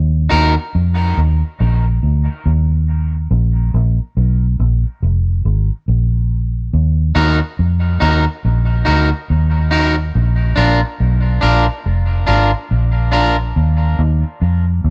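A dark, round, foam-muted electric bass opens this meditative, heavy dub reggae excerpt at a slow 70 BPM with a swung 16th feel in Eb harmonic minor, punchy and up front, while a bright, twangy, picked guitar at the edge of break-up flickers through dub echo at 0.3 seconds and returns at 7.1 seconds over chords moving from Ebm to Bb, the echo-heavy mix sitting in a digital ambience.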